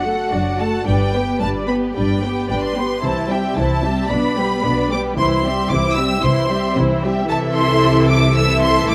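This quick, classical-period movement for string orchestra is cheerful and spirited, moving at 112 BPM in 4/4 with a rubato feel in G major. Two violin sections carry the upper lines: the first sings the melody high and up front with a lush, smooth vibrato, while the second plays a focused supporting line beneath it. The violas fill in the accompaniment close to the listener, expressive and soft in attack, with touches of portamento. Cellos sit in the background with a rich, even tone and light vibrato, with the double basses' smooth, lush bowing an octave lower. The harmony moves from D/F# to G, then through C, G/B and back to C, arriving at Am/C at 7.3 seconds. Light reverb and close, detailed microphones give this 8.9-second cut from a longer piece an intimate, polished sound.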